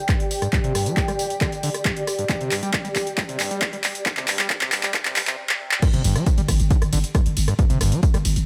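With light reverb and a high-passed sheen, this short cut from a longer driving, intense peak-time techno track runs at 136 BPM in 4/4. It opens on a blurred, detuned granular cloud pad with sidechain pumping, while a squelchy, resonant acid bass riff with distortion and delay moves through a filter sweep. A layered, punchy electronic kick and an up-front, overdriven analog drum machine of crash, ride, hi-hat, handclaps, rim click and tambourine carry the build-up with drum fills. The pad stops at 5.4 seconds, and the drop arrives at 5.8 seconds, where a growling, buzzy 808-style bass with overdrive, sidechain pumping and a low-pass filter enters at 5.9 seconds on a low G.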